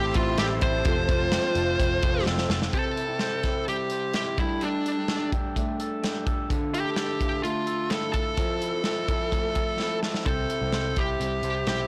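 A modern studio drum kit drives this jangly indie pop clip at 127 BPM in a straight 4/4, its punchy kick and medium-tuned snare sitting up front, with fills at 2.3 and 9.8 seconds. The mood is youthful and breezy, in C major, moving from Am7 and F into a run of C, Gsus2, Dmadd9 and Fmaj7 after 2.7 seconds. Up front, a dark, compressed fuzz lead guitar carries the melody with distortion and slapback echo. Two picked, twangy electric guitars through a small old amp play throughout: one is bright and slightly broken-up, playing accompaniment, and the other is warm and tucked in the background, playing arpeggios with slapback echo. During the opening 2.7 seconds, a round, foam-muted electric bass, a reedy, worn electric piano with fast tremolo, a very quiet, lush violin section and a swirling, phased string machine fill out the sound, and the bass returns at 10.3 seconds. The whole mix has a small room reverb and a blown-out, overdriven character, and the clip is cut from a longer piece.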